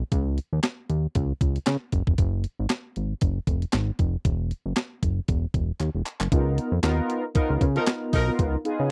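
Smooth and feel-good, this short excerpt of early-eighties boogie funk moves at 116 BPM in 4/4 with a gentle sixteenth-note swing, riding sus2 chords on C#, F# and E before opening onto a C#13. A fat analog bass carries the bottom from the start, its thick, detuned sawtooth and square tones shaped by a filter sweep and ring modulation, sustained and up front. Beside it, a clean 12-bit drum machine supplies a thumpy kick, medium-tuned snare, hi-hat and handclaps, with a sampler-style punch that sounds re-recorded in a large room, and a drum fill arrives at 5.8 seconds. At 6.3 seconds the second section brings in a dark, round synth brass with chorus and vibrato, and at 7.4 seconds a tight, distant-sounding horn section adds a brief second line. The mix is dry and close, in the manner of a 1970s studio.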